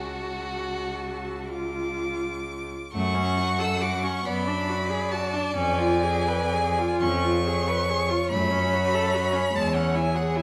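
A focused, clear first violin sings the melody up front in this melancholic, elegiac passage from a slow romantic string quartet movement in F# minor, unfolding in a rubato 6/8 at 35-50 BPM over a close second violin line, a smooth, even viola accompaniment and an intense, up-front cello bass, with all four bowed, vibrato-rich parts set in moderate recital hall reverb.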